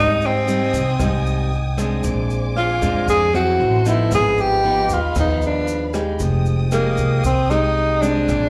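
A straight 4/4 bossa nova groove carries this sophisticated, romantic excerpt from a live club set heard through the venue's PA, where a breathy, whispered tenor saxophone sings the up-front melody with vibrato and scooped notes and a fingerpicked nylon-string guitar with audible finger squeak accompanies, both touched by slapback echo, while a lush bowed string section holds sustained chords, a woody pizzicato upright bass anchors the low end, and from 0.2 s a dark brushed drum kit with boomy kick and rim clicks sits in the background beside a grainy, bright tube shaker.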